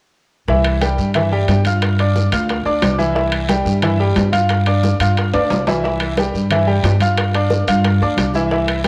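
A straight 4/4 salsa pulse drives this festive, sunny latin fragment at 179 BPM in C major, cut from a longer piece. Up front, a bright concert grand piano with a worn, cassette-tinged tone and deep bass comps over a simple alternation of C and G5, while a woody, thumpy pizzicato upright bass on gut strings holds down the low end with a dark, acoustic weight. Behind them, thin-skinned, damped congas struck with hard hands and tight, high-tuned bongos played with soft hands sit back in a small room, joined by a raspy guiro. Ringing metal-shell timbales, compressed and saturated, come in at 0.6 s, and a drum fill arrives between 5.3 and 5.8 s. A moderate spring reverb and the home cassette recording give the whole an intimate, lo-fi charm.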